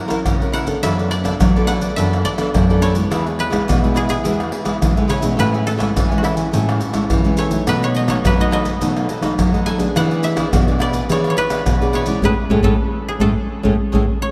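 Set in a vast, echoing space with a long cathedral reverb, this playful, sunny cut from a longer samba and choro piece moves at 105 BPM in A major, tuned slightly below standard. A dry, woody koto played with fingerpicks carries the melody over a mellow, crisp picked cavaquinho and a fingerpicked classical nylon-string guitar, while a second, full-bodied nylon-string guitar holds the bass line with audible finger squeak. Maracas, pandeiro, tamborim and a deep surdo played with soft hands sit up front, and the band hits an accent at 12.2 s as the chords settle on Amaj7.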